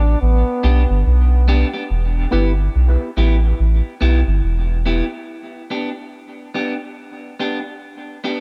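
A digital ambience surrounds this short cut from a longer reggae piece, which has a meditative, hypnotic mood and a swung sixteenth-note feel. A clear, close-miked trombone with vibrato opens with a brief solo phrase treated with dub echo and stops at 1.0 seconds. Beneath it a deep, round sub bass sits up front, its soft, sustained tone carrying the low end until 5.0 seconds. A clean electric guitar enters at 0.6 seconds, its bright, twangy picked tone thinned by a high-pass filter and trailed by dub echo through to the end. Soon after the harmony moves from G to E minor, a single hollow, percussive organ stab with chorus and dub echo appears briefly, and the chords later return to G.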